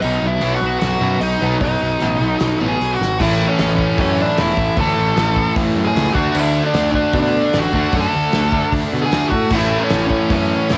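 Rowdy and upbeat, this short punk rock cut opens in half time before a drum fill at 3.0 seconds kicks the band into full straight-ahead drive, with the chords moving from B to A, then D, and back to A. Up front, a dark, smooth lead guitar carries the melody through an overdriven, tape-softened tone. Behind it, a double-tracked, high-gain guitar grinds out the riff. From 0.4 seconds, a sludgy overdriven guitar and a bright, scooped, very quiet distorted guitar join that riff. A growly fuzz bass with a bright, direct-and-amped bite anchors the low end. A loose acoustic kit with a fat snare and tight kick drives the beat with crashes and hi-hat, all heard in a small-room home recording on cassette that gives the sound a dusky, lo-fi haze.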